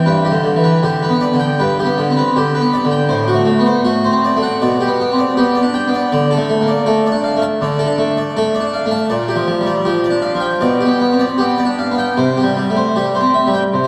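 Heard through a worn, warbling cassette with drifting pitch and a long church reverb of 3.6 seconds, this brief cut from a longer baroque-style suite movement features a solo French-style harpsichord, close and up front with a full, plucked tone from its two sets of strings, playing a flowing, dance-like line in 4/4 at 79 BPM with rubato, tuned to A4 = 439 Hz and ranging from G2 to A5 as its harmony moves from G through D7/A, Dm and Gm7/Bb to a closing C5 at 12.2 seconds.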